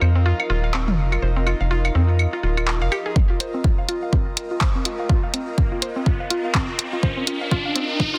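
A minimal techno fragment, cut from a longer piece, settles into a hypnotic, sparse groove with a swung sixteenth-note feel. A woody, mallet-like synth pluck repeats its riff throughout, treated with chorus, digital delay and sidechain pumping. Beneath it, an airy, breathy pad holds a soft texture with chorus, while a very quiet swarming drone adds tension until 3.2 seconds. A rubbery, hollow square bass sits up front with sidechain pumping, and overdriven electronic claves and toms supply gritty percussion with tape echo early on. A punchy, tape-warm analog drum machine brings handclaps and hi-hat from 0.7 seconds, and an up-front electronic kick drum arrives at 3.2 seconds as a build-up and filter sweep begin, joined later by a riser. The mix carries light reverb and digital ambience under a dense, heavily limited modern master.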